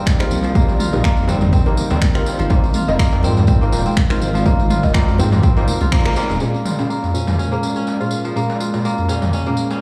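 A dark analog pad and a fingerpicked kora open this afro house excerpt together, the pad holding deep, detuned sustained chords in the background while the kora's ringing, crisp arpeggios pass through tape echo and a low-pass filter. Moving at 123 BPM in 4/4 with a light 16th-note swing in Bb dorian, the groove turns spiritual and hypnotic as a punchy, overdriven electronic kick sits up front beside a deep house kit of finger snaps and toms, a distant clay-shell darbuka, a jingly vintage tambourine and very quiet, low-tuned congas. A soft, decaying chord stab and a smooth gliding synth bass with portamento and vibrato both breathe with sidechain pumping over chords moving from Cm7 to Ab6. After a band accent at 5.9 seconds, the kick drops out, and at 6.4 seconds the bass and congas stop as the harmony shifts to Bbm7 and filter sweeps move across the kit and the kora. The whole mix sounds as if played on a big sound system in a bare room, with large studio reverb around it.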